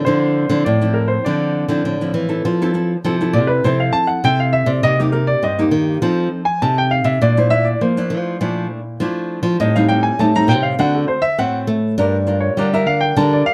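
A warm, natural grand piano carries the melody from the start over a small, fingerpicked nylon-string guitar accompaniment and a bright, classical-toned nylon-string guitar bass line, all up front in a dry, close and detailed sound, in this bittersweet, yearning samba-choro in F major at 101 BPM, cut from a longer piece, with the piano taking a solo from 2.4 seconds as the harmony moves from Dm9 through Fmaj7, Bbmaj9#11 and D7 to Gm7.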